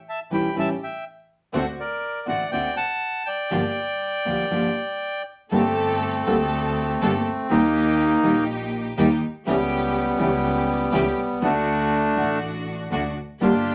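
Melancholic and dramatic, this tango excerpt in G minor moves at 121 BPM in 4/4 with a rubato feel, cut from a longer piece. A reedy, bright bandoneon carries the melody, close-miked, dry and up front, ranging from G3 to B5. Beneath it, a thumb-plucked classical nylon-string guitar supplies acoustic accompaniment, while a dark chamber string section adds smooth, even bowed stabs with vibrato, and a single clear double bass holds the low end with focused, bowed vibrato tones. The harmony travels from A7 and D7 to Gm7, then into a second section from 5.5 seconds that passes through Gmadd9, Eb and A7/C# before settling on D. A wet studio reverb and a layer of vinyl crackle color the recording.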